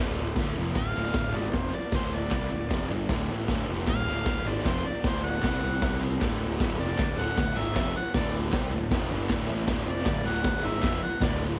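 A straight 155 BPM garage rock beat in 4/4 drives this rowdy, raw home-cassette cut from a longer piece, where a punchy, gritty, up-front drum kit with crash cymbal, kick and snare enters at 0.4 seconds beneath a double-tracked, distorted fuzz guitar riff and a warm, overdriven picked fuzz bass, crisp group handclaps sit in the background, and a bright, close-miked harmonica with light vibrato takes an overdriven solo over chords moving from D5 to C5 to D.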